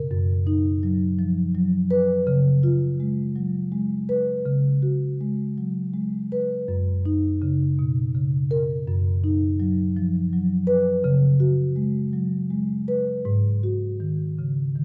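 A straight 3/4 pulse at 82 BPM carries this flowing contemporary classical piece for solo marimba, which is tuned to A4 = 438 Hz and cut from a longer work. The marimba, played with soft mallets on rosewood bars, plays alone for the full 14.8 seconds, spanning F#2 to B4 with a woody, round and mellow tone. It sits close and up front, full in body, while a recital hall lends a wet reverb with a 1.6-second decay around it. The harmony moves through B over F#, C#7, C#7sus4 and F#6 before returning to B over F# and C#7sus4, settling on a G#7 colour at 13.3 seconds. The dark, warm production gives the whole passage a flowing, warm glow.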